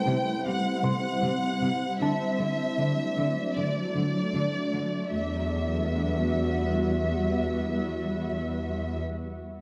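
A shimmering, ethereal pad with chorus sustains dark chords beneath an up-front violin section carrying a smooth, vibrato-rich melody, while a close cello section anchors the bass and a clear, worn grand piano with delay adds background texture until 5.2 seconds, all set in the wet reverb of a scoring stage for a futuristic, tense cinematic cue that moves from C to D and settles on Emadd9 at 5.1 seconds.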